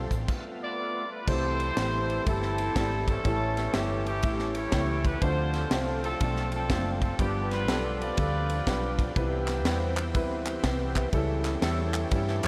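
Jubilant and uplifting, this excerpt of uptempo gospel swings at 122 BPM in C major, opening with a bright, shouting tonewheel organ solo, lightly overdriven with key click, chorus vibrato and a slow rotary speaker, before it settles into sustained chords in the background. A warm concert grand piano with deep bass and lush chorus plays accompaniment, a dark, round hollow-body electric bass punches underneath, and a crisp, polished fusion drum kit with a high-tuned snare and punchy kick sits up front, while a clear, tight vintage horn section carries the melody with tape echo from 0.6 s. Close, dry group handclaps join in the background at 9.5 s, and the whole mix is dreamy and soaked in a huge ambient reverb.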